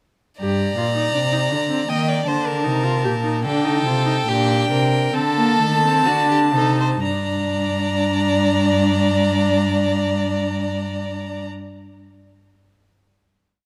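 Driving yet contemplative, this short, complete piece is a baroque-style fugue for string quartet in G minor, set in 4/4 with a straight feel at a tempo between 59 and 82 BPM that slows down from 0.4 to 9.1 seconds. Two violins, viola and cello each play one bowed line of imitative counterpoint from 0.4 to 11.5 seconds, moving through G minor, E-flat and a bare D7 before coming home to G minor at 7.1 seconds, where the exposition gives way to a held final chord. The first violin carries the melody high in its range with a rich, focused vibrato tone, while the second violin, clear and close, sings a second line beneath it. The viola adds an even, smooth accompaniment, and the cello, slightly louder and up front, anchors the bass with a soft attack, expressive portamento and a rich sound. A moderate concert hall reverb with a 2.4-second decay gives the ensemble a spacious, resonant bloom.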